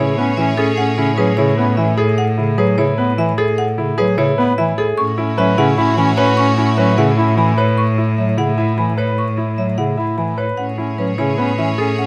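A hypnotic, propulsive stretch of minimalist classical pattern music in 7/8, opening at once with a hard-mallet marimba melody that sounds dark and percussive, over clear piano arpeggios with audible action noise, a warm bass clarinet accompaniment and a focused, up-front bowed cello holding the bass. A solo clarinet's second line and a distant chamber string section's sustained, vibrato chords drop in and out together, returning at 5.0 and 10.6 seconds as the harmony moves from Amaj9 to Bsus2/A and back. Close, detailed microphones capture the ensemble with light reverb in this cut from a longer piece.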